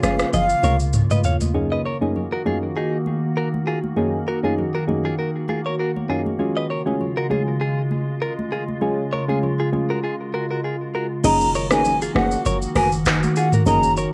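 Joyful and sunny, this afrobeats clip at 99 BPM in F# major, cut from a longer piece and steeped in cassette tape character, opens with a booming analog drum machine fill from 0.3 seconds before a long stretch where soft, mellow electric-piano-like synth keys, a glassy, ethereal FM pad, a twangy clean electric guitar riff with tape echo and thin-skinned congas in the background carry the groove, until the drums, a round, dark log drum bass and a breathy, hollow jazz flute with vibrato and tape echo return at 11.2 seconds.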